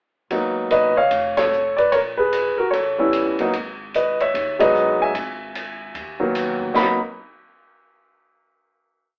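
The recording has a narrow, telephone-like sound, with the band playing live in one room under a wet studio reverb. This short, complete jazz piano trio piece has a cool, moody swing feel. The concert grand piano sits up front with a warm, deep-bottomed tone, playing a motif-based melody in period phrases, partly doubled in thirds, over syncopated comping in rootless voicings. Further back, the upright bass plays a woody, pizzicato two-feel line on steel strings, while the open acoustic drum kit keeps a stick pattern on the ride cymbal, with dark cymbals, a medium-tuned snare, a boomy kick, hi-hat and a china cymbal. The band hits accents together at 1.3 and 4.5 seconds, and the piece settles on a final minor chord at 6.7 seconds.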